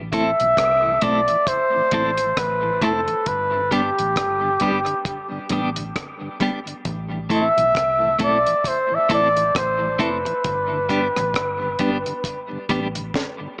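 A flugelhorn sits up front in this meditative dub reggae excerpt, its warm solo line carrying light vibrato and scooped notes through a dub echo over a slow, swung groove that alternates between A minor and G. Beneath it, a clean, compressed electric guitar pulses with tremolo and echo, a mellow, flute-like tonewheel organ turns on a slow rotary speaker in the background, and a dark, foam-muted vintage bass gives a round, amped low end. A dry, deep drum kit with a high-tuned snare, tight kick, rim clicks and hi-hat closes on a fill at 13.1 seconds, the whole mix bathed in spring reverb with a small-speaker character.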